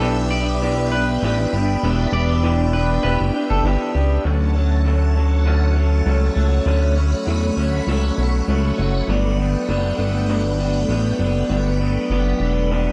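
A glossy, pulse-width-modulated synth bass sits up front beneath a dark, lo-fi electric guitar with lush chorus and warbly pitch drift, a twangy second guitar line bathed in chorus and delay that stops at 3.6 s, and a swirling phased string machine holding bright sustained chords, as this nostalgic, sunny bedroom-pop excerpt in D major moves at 99 BPM with a light swing from Em7 to Dmaj7 at 4.2 s and Gmaj7 at 9.1 s in light reverb.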